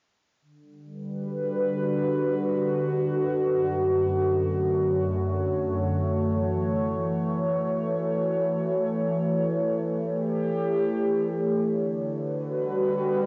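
A warbling, detuned pad sits up front from 1.0 s to 13.3 s, its sawtooth and triangle tones blended into a mellow, nostalgic haze. This short IDM fragment, cut from a longer piece, feels playful and intricate, drifting through sustained chords that move from Gmaj7 to Dmaj7/F#, F#m7 and A7 before settling back on Gmaj7 at 11.6 s. Each chord blooms with a slow attack and fades on a long release, so the harmonies blur gently into one another. Chorus, phaser and the pad's own reverb give the sound a shimmering, wobbling character, while a cassette tape effect adds a lo-fi grain. A moderate spring reverb surrounds it all, and the home cassette recording rolls off the top end, leaving a soft, dusky sound.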